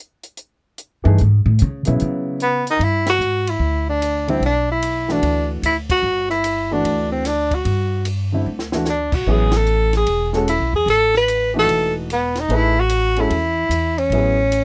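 A dry cut from a longer modal jazz piece in G major, swinging at 149 BPM in 4/4 with a spiritual, open mood. A compact cocktail kit with dark cymbals, a high-tuned snare and a tight kick sets the pulse, while a woody, thumpy pizzicato upright bass on gut strings sits up front beneath warm baby grand piano chords moving from a rootless Amaj9 to Gmaj9 and later Amaj7sus2. A breathy, mellow tenor saxophone enters at 2.4 seconds with light vibrato and scooped notes, sounding distant and roomy; the band hits accents at 3.0 and 5.8 seconds, and a short drum fill arrives at 8.4 seconds.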